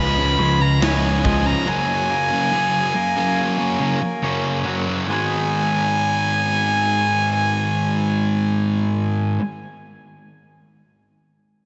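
A close, floating violin leads this brooding, cinematic post-rock excerpt, its soft-attack, airy sul tasto bowing carrying the melody up front throughout. Beneath it, a double-tracked fuzz guitar grinds out a distorted riff, while a twangy, compressed electric guitar through a small old amp picks arpeggios across the full stretch. A darker, fingered guitar at the edge of break-up adds arpeggios in the background only until 1.7 seconds, and a growling, overdriven picked bass holds a low note until 1.5 seconds. A big rock kit with a punchy kick, medium-tuned snare and bright cymbals crashes in briefly from 0.8 seconds, sitting back in the mix. The harmony moves from C#7 to F#add9 and settles on G#m at 5.1 seconds, all wrapped in a lush hall reverb that gives an arena-sized, softened top end, with slapback and tape echo trailing the violin and the two arpeggiating guitars.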